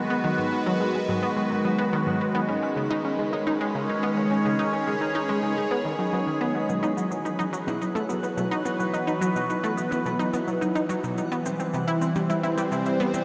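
A straight 4/4 pulse at 107 BPM drives this luminous, expansive stretch of ambient, sequencer-driven space music, cut from a longer piece and moving through G#m7, C#sus2, Bsus4 and C. Up front, a bright, morphing wavetable pad with phaser holds sustained chords while a round, detuned analog pluck with chorus and delay plays its riff; behind them a mellow, thumb-plucked concert harp rings out arpeggios and a very quiet granular texture sparkles and twinkles. At 6.7 s electronic cabasa and percussion blips join with delay, all set in a dreamy, reverb-soaked hall with shimmer trails.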